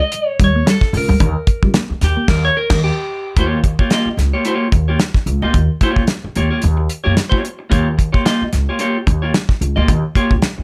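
Funk at 110 BPM in 4/4, with a light sixteenth-note swing and a playful, funky mood, this short cut from a longer piece sits in Eb mixolydian, moving from an Eb7 chord to an Eb9 at 3.4 seconds. A clean, picked electric guitar sits up front throughout, taking a solo spot for the opening 3.4 seconds before settling into accompaniment. Underneath, a second, mellow electric guitar plays a brief fingered riff in the background with a phaser, dropping out by 2.2 seconds, just as the band hits an accent that carries to 3.4 seconds. A damped 70s drum kit keeps things dry and airy, with dark cymbals, a medium-tuned snare and a tight kick, while a woody, growly upright bass with a thumpy pizzicato attack joins at 0.4 seconds. Light studio reverb gives the polished, up-front mix a small sense of room.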